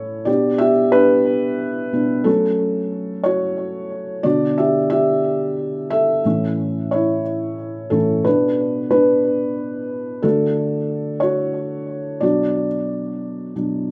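A felt-muted upright piano carries this short pop excerpt alone from start to finish, its thick felt giving a soft, dark, mellow tone with audible action noise that makes it feel intimate and up front. The mood is heartfelt and tender, moving at 60 BPM in 6/8 with a straight feel, tuned to A4 = 442 Hz. The piano spans from A2 up to E5, and a digital delay trails its notes. The harmony drifts through G/B, F#m, Bm, A, Bm, D and back to Bm, settling on Bm at 12.2 seconds before the clip ends at 13.9 seconds. A noticeably wet studio reverb surrounds the instrument, and the rough home-demo mix adds to the private, unpolished character of this fragment cut from a longer piece.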